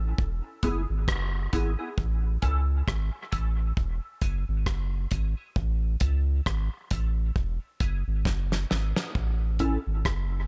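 A deep, round sub bass with a soft square-wave edge opens this hazy, laid-back dub reggae excerpt at 67 BPM in A major with a swung sixteenth feel, soon joined by a dry, up-front 70s drum kit with a fat snare, tight kick, rim clicks and hi-hat, and then by a dark, clean, compressed electric guitar carrying chorus, a high-pass filter, dub echo and a filter sweep as the chords alternate between E and A, until a drum fill from 8.3 to 9.2 seconds leads into a brief closing passage, set in the reverb of a small room.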